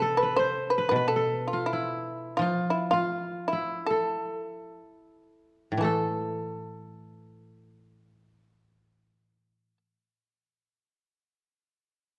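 A free, rubato pulse in 2/4 drifts and slows between 2.4 and 5.8 seconds in this meditative, austere fragment of Japanese chamber music, cut from a longer piece. A buzzing, plectrum-plucked shamisen carries the melody up front, joined by a woody, fingerpicked koto on a second line in the same register, while a lower koto supplies a dry accompaniment beneath. The trio sits in a moderate recital-hall reverb, and the whole is coloured by worn cassette tape with warbly pitch drift.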